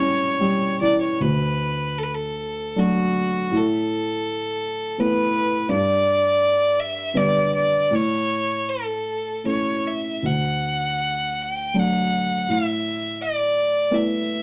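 This Celtic folk slow air in D major moves in a rubato 3/4 at roughly 73-85 BPM, with a wistful, pastoral mood. A single bowed fiddle carries the melody up front, its bright, focused tone colored by light vibrato as it ranges from F#4 to G5. An upright piano accompanies from the low register up to E4, sounding dark and woody with a short, boxy sustain, and sits close in the mix just beneath the fiddle. The harmony starts on A7, settles onto D at 1.2 s, then moves through Asus2, G and A before returning to D and Asus2 as this cut from a longer piece ends at 14.4 s. A moderate studio reverb gives the duo a modest sense of space.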